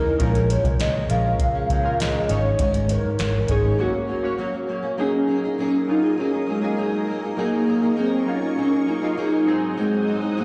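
Hazy and sunny, this short indie pop and bedroom pop excerpt in Gb lydian moves at 100 BPM, with a warbling, mellow synth lead carrying the melody over glossy chorused retro keys and fingerpicked steel-string acoustic guitar, while a dark, round muted electric bass and a soft vintage rhythm box with deep kick, crisp snare and metallic hats drop away before a break at 3.8 seconds, after which a silky, phased string machine enters at 5.5 seconds over Gb69 harmony, all heard through a venue's PA in a recital hall's reverb.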